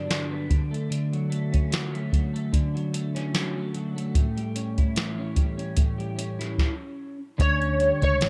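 Sunny and laid-back, this short indie and bedroom pop excerpt moves at 74 BPM with a gentle swing, built on a jangly twelve-string electric guitar, twangy and compressed, drenched in lush chorus and vibrato, moving through Gmaj7, Dmaj7 and A7. A soft vintage rhythm box with a deep kick, crisp snare and metallic hats sits up front under light digital ambience, while glossy, detuned retro synth keys carry the melody in brief bursts at the start and again from 7.4 seconds. At that point a dark, round, foam-muted electric bass joins as the harmony returns to Dmaj7.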